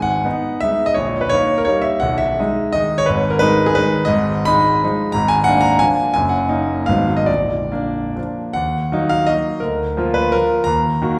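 Capricious and wistful, this brief romantic-era excerpt is a triple-time dance in 3/4 with dotted rhythms and supple rubato, where a clear, intimate grand piano plays alone, up front with audible action noise, spanning deep bass to bright treble at a flexible 130-191 BPM, moving from G# minor to Eb minor at 4.1 seconds, and opening into a new section at 8.6 seconds, all bathed in the wet reverb of a recital hall.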